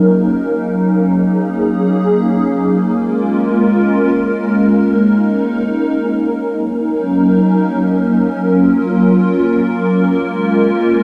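Hazy and melancholic, this brief hip hop fragment floats in free time, carried by a single hollow, flute-like pad that plays alone from 0.0 to 11.0 s. The pad sits up front with a slow attack and sustained, warbling tones, its detuned, vintage character thickened by ensemble chorus as it moves between Ebm7 and Bbm7 chords, with a fresh section arriving at 6.6 s. A huge ambient reverb and a dark, warm production give the whole fragment a drifting, dreamlike sense of space.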